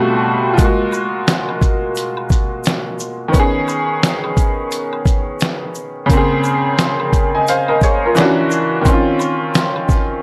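Lo-fi hip hop with a melancholic, reflective mood, swung gently in 4/4 and cut from a longer piece, built on lush ninth chords under a bright, woody upright piano that sounds worn and slightly detuned, with audible action noise, long sustain, and a cassette-tape haze, low-pass filtering and plate reverb. From 0.6 seconds a compressed, pitched-down sampler-style kit sits up front with a thumpy kick, medium-tuned snare, hi-hat, shaker and finger snaps carrying 12-bit grit and a large-room character. Egg shaker, woodblock and group handclap stay close and dry in the background, and the whole has a gritty hardware feel with light reverb.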